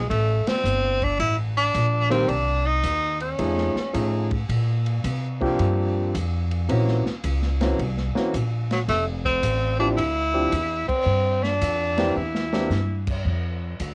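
A clear tenor saxophone with vibrato, scooped notes and a soft attack opens this sophisticated, playful swing-and-bop jazz excerpt at 110 BPM in F major, alongside a woody, growly pizzicato upright bass and a dark, smooth drum kit with a boomy kick, the horn and drums both carrying a cassette-tape coloring, before a warm grand piano enters at 2.1 seconds to accompany through changes such as F7alt and Gb7#11, while the saxophone drops out and returns at 8.7 seconds, band accents punctuate the swing, and a drum fill at 12.2 seconds leads toward the close of this lightly reverberant home cassette recording.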